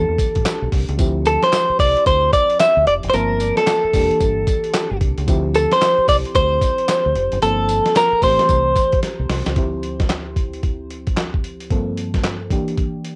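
A bright, twangy clean electric guitar carries the melody up front from the start, colored by cassette tape and plate reverb, over a mellow FM electric piano and a round, dark fingered bass. A gritty sampler-style drum kit of thumpy kick, snare, hi-hat, handclaps and tambourine joins at 0.2 seconds, giving this punchy, slick new jack swing cut in D minor a swung 16th-note feel at 112 BPM through chords such as Dm11, Gm11 and Em7b5, all with the feel of a home cassette recording in a small booth. The guitar drops out at 9.0 seconds as a drum fill begins, and from 9.6 seconds the electric piano and drums carry the excerpt on their own.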